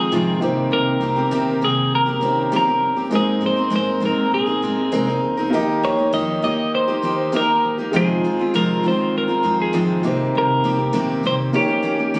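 A bright, twangy twelve-string electric guitar carries the melody up front in this easy-going, carefree acoustic pop cut from a longer piece, its clean, compressed tone trailed by tape echo. Beneath it, a picked, full-bodied jumbo steel-string acoustic guitar sits close, a grand piano adds intimate, natural colour with audible action noise and long sustain, and a woody, thumpy pizzicato upright bass on gut strings anchors the low end until 12.0 seconds. Captured on a phone in the room with light club reverb, the straight 4/4 music moves through Cm7, Abadd9, Eb and Fm7 before returning to Cm7 and closing on Eb7.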